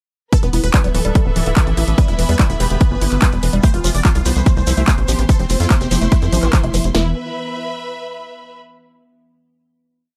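Opening at 0.3 s on a heavy, overdriven four-on-the-floor kick with punchy snare, claps and hi-hats, this hypnotic psychedelic trance piece in E phrygian at 145 BPM launches straight into a drop built on a tight, rolling sixteenth-note sequencer bass, a detuned, sidechain-pumped supersaw stab repeating a sixteenth-note riff over a pedal note through phaser and delay, a woody wave-folded pluck cycling a 12-step acid loop that drifts against the bar, a bright, morphing wavetable pad drone, lush, distant bowed strings, a metallic FM wobble bass adding short answering phrases in the background, and a grainy shekere joining at 3.6 s, before the strings carry on into a final chord, ringing alone until 8.6 s in a mostly dry mix.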